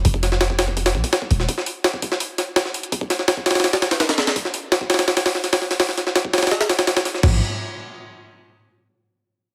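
Frenetic and nostalgic, this short cut from a longer drum and bass and jungle track is driven by an up-front, sampler-style jungle kit that sounds gritty and pitched up, with a thumpy kick, a high-tuned snare, hi-hat, toms and crash cymbal, all overdriven and compressed until the drums stop at 7.3 seconds. A deep, boomy 808-style bass with a sine tone, a noise layer and a fast attack that then decays sounds in the first 1.5 seconds and returns briefly at 7.2 seconds. Light digital reverb sits around a heavily compressed, radio-like sound.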